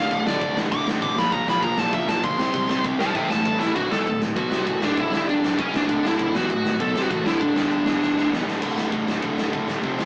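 A rough rehearsal-room recording with a small-speaker sound and light reverb catches this upbeat, rowdy punk rock clip, cut from a longer piece, charging along at 197 BPM in a straight 4/4. A dark, smooth overdriven lead guitar sits up front, opening with a solo over a D, Bb, C and A7 progression before settling into D major at 3.8 seconds and carrying the melody until 8.3 seconds. Beneath it, three picked guitars grind out the riff in the background: a bright distorted one, a warm, sludgy overdriven one, and a very quiet double-tracked tight part reaching up to C5. A fuzzy, growly picked bass played direct and amped adds overdriven weight down low. The dark, smooth big-room acoustic drum kit sits up front, with a punchy kick, crash and ride cymbals, a medium-tuned snare and a fill from 8.0 seconds that launches the final stretch back on D.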